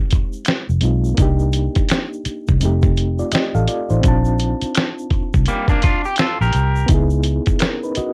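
Sultry and introspective, this short neo-soul and R&B cut from a longer piece moves with a swung sixteenth-note lilt in 4/4. A reedy electric piano carries the chords through its built-in speakers, its fast tremolo shimmering over a progression that drifts from Fm9 through Cm7, F9 and Bbmaj9 before landing on Dbm7. Up front, a gritty, compressed sampler-style drum kit lays down a thumpy kick, a medium-tuned snare and hi-hat, while a close, dry tube shaker and finger snaps sit quietly in the background. A dark, foam-muted fingered electric bass with a round, amped tone joins at 0.7 s. Between 5.5 and 6.9 s, a twangy electric guitar at the edge of break-up steps forward with a brief second line, and the whole piece carries the tape-warm character of a home cassette recording in a light reverb.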